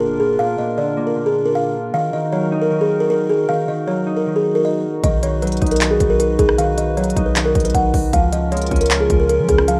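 Melancholic and brooding, this half-time trap excerpt at 155 BPM in Eb minor opens with a buzzing, woody kalimba melody up front over a dark, clean electric guitar and a hollow, flute-like pad shimmering with chorus, before a deep, boomy 808-style bass and a crisp electronic trap kit with hard-clipped kick, handclaps and rim clicks arrive at 5.0 seconds, all set in light reverb with a rough home-demo feel.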